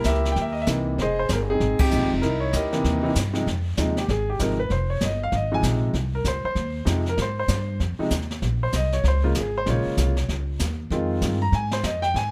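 Moody and swinging, this short jazz piano trio cut from a longer piece moves at a brisk 194 BPM in 4/4 with a gentle 61 percent swing on the eighth notes, set in F minor. A clear concert grand piano carries the melody throughout, its deep bass and long sustain sitting up front, and from 3.5 seconds it takes a solo that runs to the end at 12.3 seconds. Beneath it, a woody, thumpy upright bass with steel strings is plucked close in the mix, holding the low end. A brushed drum kit rounds out the trio with dark cymbals, a high-tuned snare and a boomy kick, sitting a little lower than the other two parts. The band hits a shared accent at 1.8 seconds, and the harmony turns between C7#9 and Fm7 before moving to Bbm7 and back to Fm7 under the solo. The sound is dry and intimate, captured with close, detailed microphones.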